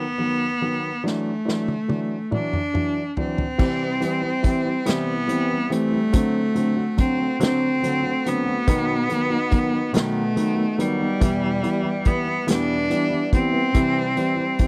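A melancholic, aching pop ballad in six-eight time, this is cut from a longer piece and sounds like a dry, close 1970s-style studio recording in a small room. A bright, biting cello carries the melody up front from the start, bowed by one player with intense vibrato, over a dark, woody upright piano whose mellow, intimate accompaniment lets its action noise come through. The acoustic drum kit arrives at 1.1 seconds with a fill, played up front with bundle sticks, punchy kick, a medium-tuned snare, toms and dark cymbals including hi-hat and crash. At 3.6 seconds a fingerpicked jumbo steel-string guitar enters in the background, its fresh strings giving full-bodied arpeggios. The harmony drifts through chords such as Dadd9, D7 and Em, which keeps the mood aching and unresolved.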